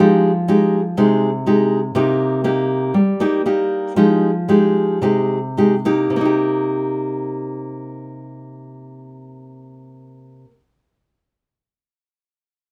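Lightly reverberant and intimate, this melancholic bossa nova excerpt in C minor, in 4/4 at 104-122 BPM, features a bright, fresh-stringed nylon-string guitar played solo, fingerpicked in a classical manner and placed up front between C3 and G4, moving through Fm9 and Cm7 chords and slowing down from 1.9 to 6.1 seconds before a new section begins.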